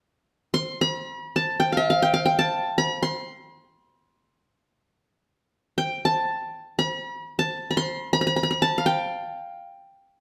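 A solo qanun enters at 0.5 s, its plectrum-plucked triple strings ringing out close and up front in a stately passage of Arabic maqam music. The instrument's acoustic tone is bright-edged yet warm, and it stays in a high register, reaching from a quarter-tone-inflected E5 up to C6. A stone room adds a reverberant halo of about 1.1 s that lingers around each note. The qanun plays alone through to 10.2 s, captured as a live performance in a single space. The passage is cut from a longer piece.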